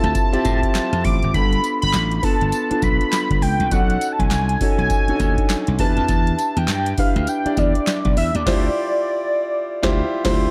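Confident and slick, this short new jack swing cut in D dorian moves at 101 BPM with a swung sixteenth-note feel in 4/4. A booming analog drum machine sits up front with a deep kick, crisp snare, metallic hats, handclaps, tambourine and crash, its snare, claps and hats carrying a short room sound, while a punchy, bright slap bass holds the low end. A concert grand piano supplies intimate accompaniment with audible action noise and long sustain, and an octave-doubled lead carries the melody with a bold, retro tone of detuned sawtooth and triangle colored by ring modulation, chorus and phaser. A group handclap, barely audible, joins from 0.8 to 8.0 seconds. The chords move from Dm11 through G7, B7 and Em7 back to Dm11, where the band hits an accent from 8.5 seconds to the cut-off, all framed in a dark production with light digital ambience.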